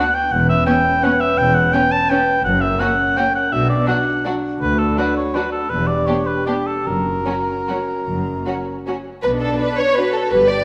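This sweeping, bittersweet orchestral ballroom waltz in B minor, cut from a longer piece, opens with the upper ensemble all at once. A mellow solo cor anglais with light vibrato sits up front on a second line, beside a rich, soft-attacked violin section. A warm, lush violin section carries the expressive melody from a distant place in the background. Moving in 3/4 at a rubato 140 to 181 BPM, the music rests on a smooth, even viola section accompanying in the background and a tight, classical-style French horn section holding sustained chords. At 0.3 seconds the bass line enters, played by a close, bowed cello section with vibrato and a focused double bass section. The harmony passes through F#, Bm, D and Em7, and returns to Bm at 9.2 seconds as the opening phrase starts again, all set in a wet recital hall reverb that lends a spacious glow.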